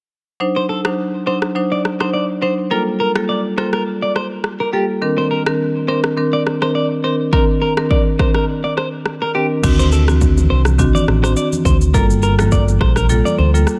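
Afrobeats at 104 BPM in 4/4 with a light sixteenth-note swing, this excerpt from a longer piece feels smooth and sultry, moving through D7b9, Gm9 and Cm9 harmony. A marimba played with medium hard mallets sits up front with a mid-forward tone as accompaniment, joined almost at once by a clean, bright electric guitar riff with a twangy, compressed edge, subtle chorus and tape echo. A deep house drum kit of crash cymbal, kick drum, rim click and shaker brings an electronic, layered, overdriven sound with a punchy kick. After a break from 8.5 to 9.6 seconds, a fingered electric bass with an envelope filter enters with a round, amped tone and sits loudest in the mix, while very quiet acoustic congas with a thick skin and medium tuning add a small-room texture. Light reverb and digital ambience give the whole a gentle sense of space.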